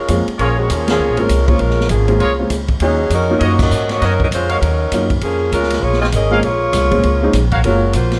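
Heard in a moderately reverberant large studio, this sultry, dramatic big band swing excerpt sets a tight, up-front saxophone section carrying the melody with smooth, vibrato-rich tone over a woody, growly pizzicato upright bass, clear upright piano accompaniment, a distant, roomy drum kit with a punchy kick, and vintage-toned trumpet section stabs, with band accents striking at 0.8 and 3.6 seconds.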